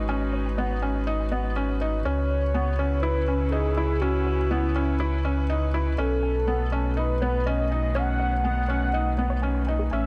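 Moving and melancholic, this electronica passage at 122 BPM in 4/4, cut from a longer piece, moves from G#m7 to C#m7 and on to B7, with a con sordino string quartet holding veiled, dark chords under a round, tube-saturated sub bass. A felt-muted upright piano sits up front with an intimate, mellow riff, its action noise audible and its notes echoed by digital delay, while a very quiet, detuned sawtooth unison pluck traces arpeggios high above. At 2.0 s a velvety synth lead with chorus and vibrato enters to carry the melody, all held in light, small-room ambience.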